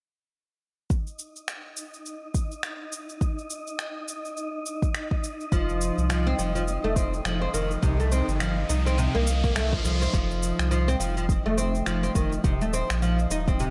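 An earthy, warm organic downtempo excerpt opens with a deep electronic kick and a shaker with finger snaps in a swung 4/4, soon joined by an airy, breathy wind-like texture, before a bright, woody oud plays arpeggios through tape echo over a round, pumping sub bass from 5.5 seconds, with an electronic riser sounding over the light digital ambience between 7.2 and 10.1 seconds.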